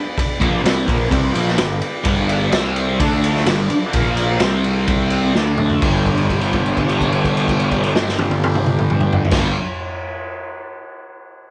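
Psychedelic rock at 127 BPM in a straight 4/4, this short excerpt cut from a longer piece has a hypnotic, kaleidoscopic mood, built on a chord cycle moving from G through C5, D5 and Bb5. A thick, double-tracked fuzz guitar sits up front with a bright, distorted riff colored by phaser, while a growly, overdriven picked electric bass holds down the low end with fuzz. The raw garage drum kit is saturated and gritty, with a boomy kick, medium-tuned snare, dark cymbals, rolled-off top and a pumping small-room sound, playing crash, ride and toms along with kick and snare. Beneath it all, a very quiet, buzzy vintage combo organ holds sustained chords with light vibrato. A drum fill at 5.4 seconds leads into a second section at 5.8 seconds, where a held note carries on until 9.3 seconds over the return to G.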